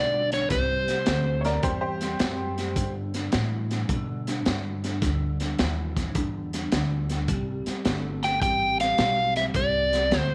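The recording sits in a small room with light reverb, and the slide guitar, drums and piano are placed up front. It is a rollicking, laid-back electric blues shuffle in G major at 106 BPM, swinging in 4/4, and it is cut from a longer piece. An electric guitar through a small old amp plays a slightly broken-up, picked, compressed riff with an ensemble chorus, sitting low in the mix, while a woody, thumpy upright bass on gut strings plays pizzicato beneath it. A crunchy breakbeat kit enters at 0.3 seconds, saturated and gritty with a high-tuned snare, a tight kick and a rolled-off top. The dark, overdriven slide guitar carries the melody at the opening and returns at 8.2 seconds. Between those passages, a bright, slightly detuned upright piano adds a brief second line from 1.4 seconds, its worn, intimate tone carrying audible action noise.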